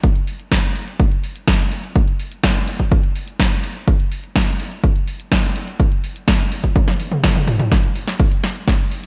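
Italo disco at 125 BPM in a straight 4/4, this short, bittersweet and danceable drum passage pairs an up-front analog kick, tape-warm and punchy, heard from 0.0 to 8.8 seconds, with a layered house kit of hi-hat, snare and toms dressed in gated reverb. The kit's snare hits hard and sits close, and the whole passage is set in a digital ambience. Drum fills arrive at 6.8 seconds and carry on through the new section beginning at 7.7 seconds.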